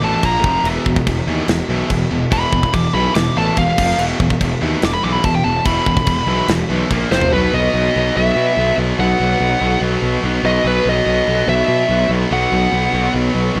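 A short cut from a longer heavy metal piece, this recording has a dark, epic mood and a light reverb around its distorted guitars and low end. At 144 BPM in a straight 4/4, a high-gain lead guitar with a dark, distorted tone carries the melody between B4 and D6, playing a solo through the first 7.3 seconds. Beneath it, two picked high-gain guitars share the riff in the E2 to B3 range, one heavy and bright, the other scooped and set further back. A fuzz-laden picked electric bass sits up front with a growly, overdriven edge, anchoring everything from E1 to B2. A tight acoustic drum kit with bright cymbals, a medium-tuned snare and a tight kick enters at 0.2 seconds, throws in a fill at 7.1 seconds and drops out at 7.3 seconds. Over the first section, power chords move among A#5, F5 and E5, and as the drums fall away the harmony lands on B, leaving the guitars and bass to carry the second section.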